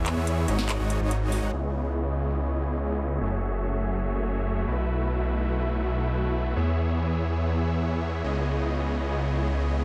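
A half-time feel in 4/4 drives this dreamy, emotional future bass fragment, cut from a longer piece and opening on a drop. An electronic trap kit of handclaps, metallic filtered hi-hats and a sharp, filtered snare plays only from 0.1 to 1.4 seconds, sitting low in the mix. Huge, bright supersaw chords carry the riff throughout, their detuned unison sawtooth stack sustained up front through a low-pass filter and digital delay, with a filter sweep shaping them from 1.5 seconds onward. Beneath them, a thick, saturated detuned saw bass blends sawtooth, square and sine tones with chorus, holding sustained notes with a fast attack. The harmony moves through extended chords such as C#m9, F#m9 and B7sus4, all wrapped in a digital ambience.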